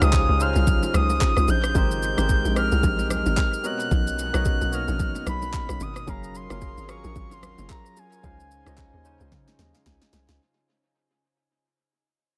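Relaxed and soulful, this amapiano drop at 111 BPM swings gently over lush major-ninth chords moving from Dbmaj9 through Abmaj9, Bmaj9 and Gbmaj9, with a tight, punchy FM log drum bass and a deep house kit of deep kick, punchy snare, handclaps, rim click and shaker sitting up front, while ringing acoustic bongos and congas add very quiet color. A soft, flute-like synth lead carries the melody with chorus and dub echo, a barky, lightly overdriven tine electric piano comps beneath it with its own dub echo, and an airy pad with slow attack and long release pumps in the background. The whole cut sits in an echo-heavy digital ambience and fades out, ending with a drum fill and an electric piano fill from 9.3 seconds.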